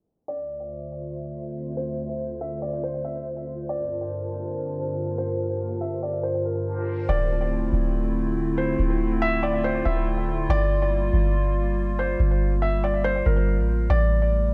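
A felt-muted upright piano opens at 0.3 seconds with a soft, intimate melody, its thin felt and short sustain trailing into analog delay. A nostalgic, warbling tape-like pad soon settles beneath it with sustained chords, detuned and lo-fi under chorus and its own reverb. Farther back, a reversed, dreamy texture adds bright granular shimmer through the first half, while a filter sweep runs across that opening stretch over Dm7 and Gm11. At 7.1 seconds a deep, round 808-style bass arrives up front, dark and decaying, as the harmony moves through Dm7, Gm7 and finally A7. This hip hop piece at 141 BPM in D minor moves with a half-time feel, and its melancholic, spacious mood is framed by a muffled, echo-heavy mix with light digital ambience.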